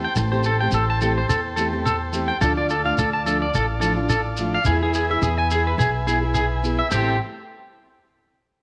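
Danceable and bittersweet, this highlife guitar band fragment in A minor moves at 107 BPM with a light swing, cycling through Am7, Dm and E. An up-front, twangy electric guitar at the edge of break-up plays picked arpeggios with slapback echo, over bright fingerpicked nylon-string accompaniment, a woody pizzicato upright bass and buzzy combo organ chords with heavy vibrato. A grainy shekere enters at 0.2 s, and the whole band sits in a moderate echo chamber reverb.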